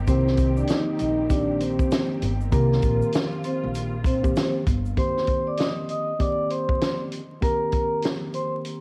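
Boom-bap hip-hop at 98 BPM in C minor with a swung 16th-note feel, tough and gritty, where an up-front vintage drum kit with a fat snare and tight kick and a ringing soft-mallet vibraphone melody with slow motor vibrato carry on over a mellow, clean tine electric piano, while woody pizzicato upright bass, veiled con sordino strings holding sustained chords and a grainy egg shaker in the background fall away by 5.0 s, the whole cut from a longer piece and captured as a small-room home cassette recording with vinyl crackle.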